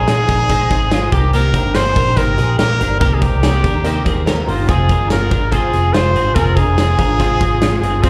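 Heard through a club's PA with the room's reverb hanging around it, this short cut from a longer piece of jangly indie pop moves at 143 BPM in a straight 4/4, sitting in F dorian with a bittersweet, restless mood. A clear trumpet carries the melody up front with vibrato and a smooth top, its line colored by analog delay. Beneath it, a picked twelve-string acoustic guitar adds a boxy, shimmering, octave-doubled parlour tone, while a woody, slightly detuned upright piano with audible action noise gives an intimate layer; both use slapback echo and stay in the background. A bright, twangy twelve-string electric guitar plays clean, compressed arpeggios treated with ensemble chorus, slapback echo and analog delay. A dark, foam-muted fingered electric bass gives a round, punchy low end, and a big rock drum kit joins at 0.1 s with a punchy kick, medium-tuned snare and hi-hat in a natural big-room sound. 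The chords move from Ab to Cm7 at 1.1 s and settle on Fm at 4.7 s.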